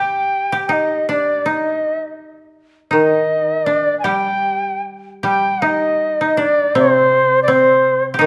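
Japanese traditional chamber music, austere and calm, unfolds in a free, rubato 2/4 feel in this brief excerpt from a longer piece. An end-blown bamboo shakuhachi carries the melody up front, its airy, reedy tone touched with vibrato, tongued attacks and a breathy chiff, its highs gently rolled off. Beneath it, a koto played with fingerpicks traces a second line, dry and woody and also close in the mix. A second koto enters at 2.9 s with a lower, quieter accompaniment, and a new section begins at 5.2 s before the shakuhachi falls silent at 8.0 s. A moderate scoring-stage reverb lends the ensemble a measured sense of space.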